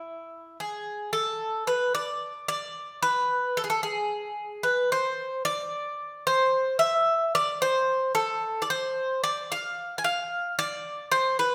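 A lone Greek bouzouki opens this brooding, moody passage of Greek folk music, its bright, metallic double strings picked up front in a moderate recital-hall reverb. Set in 7/8 at 222 BPM counted in eighths, the line moves in E Phrygian dominant between E4 and G#5, with some strings doubled at the octave. After a brief opening phrase, a new section takes over from 1.1 seconds and carries the piece through to 11.5 seconds, where this cut from a longer performance ends.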